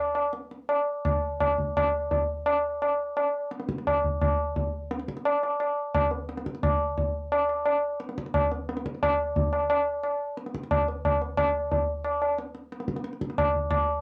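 Radiant and devotional, this short excerpt cut from a longer Indian classical piece features a solo tabla, low-tuned and ringing, placed up front in a moderate studio room, playing in 7/4 at 175 BPM with a straight feel and speeding up across its 14 seconds, all heard through worn, warbling cassette tape with a vintage, band-limited character and drifting pitch.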